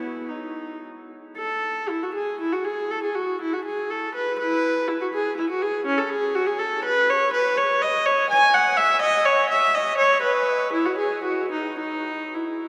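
A lone bowed viola opens this short fragment of a baroque-style suite movement, its gut-string tone set up front in a vast, echoing cathedral. The mood is serene yet dance-like, moving in a lilting triple metre with a freely breathing rubato that gives the phrasing a flexible feel. A single player in period style draws a reedy sound from the instrument, colored by a light vibrato, ranging from the low B3 up to G#5. After a brief opening phrase, a new section begins at 1.4 seconds and carries the music through to the cut at 12.7 seconds. The cathedral's long, wet reverb trails behind each note, so the solo line blooms into the surrounding space.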